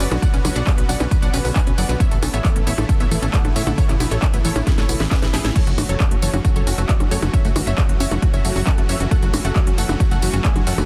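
A lush, detuned unison pluck leads this euphoric, soaring stretch of uplifting trance, carrying the melody at 135 BPM in F# minor with a cassette-tape tint, dub echo and sidechain pumping. Beneath it, a bright supersaw pad with a slow attack and long release holds sustained chords in the background, while a tight, chorused sequenced synth plays arpeggios that share the same dub echo. A punchy sequencer bass with a ring-modulated sawtooth edge drives the low end, and a heavy, overdriven electronic kick sits up front from 0.2 seconds. The techno drum kit adds a cracking snare, smooth hi-hats, handclaps, tambourine, crash cymbal and percussion blips, with a drum fill from 4.7 seconds. The pumping ties the bass, pad, pluck and arpeggios to the beat as the harmony moves from Bmadd9 through Aadd9 to F#m7 at 5.6 seconds, all in a dry, dense, heavily limited modern master cut from a longer piece.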